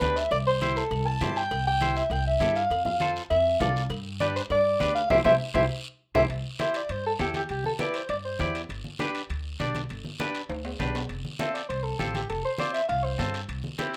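Sunny and danceable, this cumbia excerpt moves at a straight 200 BPM in C major, with a dark, distant soprano saxophone playing an up-front jazz-style solo full of vibrato and scooped notes, pausing after 8.5 seconds and returning at 11.4. Beside it, a clean, twangy electric guitar picks bright chords over C, F and G, while a woody, thumpy upright bass with gut strings plays pizzicato, low-tuned damped congas snap with a saturated edge, ringing cowbell and timbales sit in the background, and a raspy guiro scrapes close by. A band accent and drum fill mark the turn into the second section at 6.3 seconds, and the rough home demo mix carries a short, wet studio reverb.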